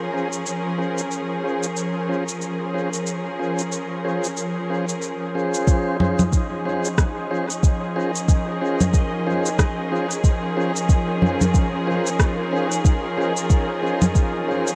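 Ambient dub in Bb minor at 92 BPM, this meditative, spacious excerpt sits on a single Bbm7 chord with a swung sixteenth-note feel. A studio string section holds sustained chords throughout, bowed sul tasto with vibrato and a soft attack that sounds intimate and close. A tonewheel organ adds stabs, lightly overdriven with audible key click, a stopped rotary speaker, a low-pass filter and dub echo trailing its hits. Electronic shaker, congas and rim click run up front from the start, also fed through dub echo, and at 5.7 seconds a soft electronic kick joins. At that same point a bubbling stepped-filter texture appears in the background, a resonant sawtooth with random filter steps, chorus and a long release. A moderate concert hall reverb gives the whole mix a roomy depth.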